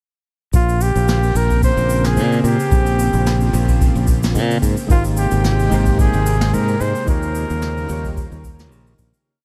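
Smooth and relaxed, this short sunset chillout piece settles into a gently swung groove from its opening moments. A deep, soft electronic kick anchors the beat, while a distant, roomy shaker and brushed snare add a light lounge pulse, and a bright, growly fingered electric bass plays a punchy dotted-rhythm line up front. A silky, vintage string machine with ensemble chorus holds sustained chords in the background as a warm, close-miked flugelhorn with vibrato and analog delay sings a motif-based solo melody in song-like phrases. At 4.9 seconds, round, mellow synth keys with chorus and delay join with spread, held chords and syncopated pushes over the Abmaj9 and Eb7 harmonies that follow the opening Bbm69. Light reverb ties the sound together before a fade-out that begins at 6.4 seconds closes the piece.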